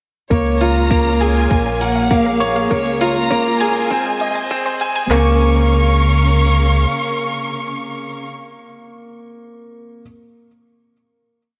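Hopeful and luminous, this short piano-and-strings electronica piece in Db major at 100 BPM opens with a 5-second filter-swept build, where an expressive chamber violin section sings arching motifs over a rich, pumping studio string section, a very quiet detuned sawtooth pluck arpeggio, a deep round sine sub bass with tube saturation, an overdriven electronic hi-hat and a tight, tape-flavoured kit of four-on-the-floor kick, woody snare and claps. It then settles on a final chord at 5.1 seconds, which the strings hold until 8.3 seconds, while the bright, up-front grand piano riff, with audible action noise and delay, rings on until 10.0 seconds in a dreamy, reverb-soaked hall.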